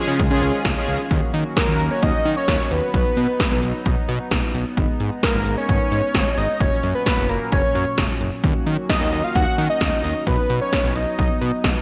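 Driving and melancholic, this synth-pop excerpt in Eb minor at 131 BPM opens with a brief, bold, nasal analog synth brass figure over a shimmering chorused pulse-width pad in the background, a thick detuned sawtooth bass and punchy 80s electronic drums with a gated snare and metallic hats, before a mellow, fat analog lead with chorus, phaser and digital delay carries the melody from 1.6 seconds, the mix set in a lush hall with a bright 1980s-style digital sheen.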